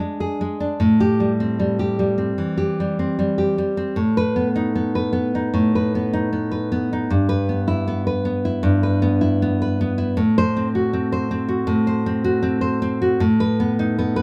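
Melancholic and wistful, this romantic excerpt for solo nylon-string guitar drifts in E minor at 77 BPM in a free, rubato 4/4, moving from a rootless E7 through Am7, B7/A and Em/G to F#dim/A before settling back on B7/A at 13.2 seconds. The fingerpicked guitar sits up front with a warm, full-bodied, deep classical tone and the sound of fresh strings, spanning G2 to C5, with finger squeaks audible on the strings. Light reverb and a live, single-room capture lend the 14-second passage an intimate, natural presence.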